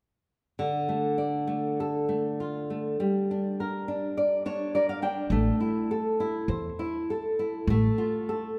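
Rubato and unhurried in four, this longing, mournful fado-style ballad opens at 0.6 seconds with fingerpicked classical nylon-string guitar, warm with fresh strings and placed up front, playing a brief fill at 4.2 seconds before a bright, woody, growly pizzicato upright bass with a thumpy steel-string bite joins at 5.3 seconds, all set in a wet concert hall reverb.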